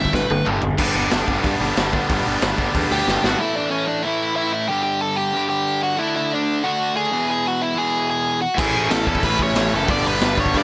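Rebellious and energetic, this short punk rock clip from a longer piece charges ahead in a straight four-four feel. A crunchy, bright rhythm guitar plays its riff up front the whole way through, while a second, compressed overdriven guitar adds its own riff from the background. A growly fuzz bass and a gritty garage drum kit, set in a small pumping room with a punchy kick, dark cymbals and a rolled-off top, drive the opening, with drum fills kicking things off and leading into the next section. At 3.3 seconds the bass and drums drop away, leaving the guitars to carry a G, A, D and E progression. The dark, smooth lead guitar sings its melody on top, and the full band crashes back in at 8.6 seconds. The mix is dry, with little reverb.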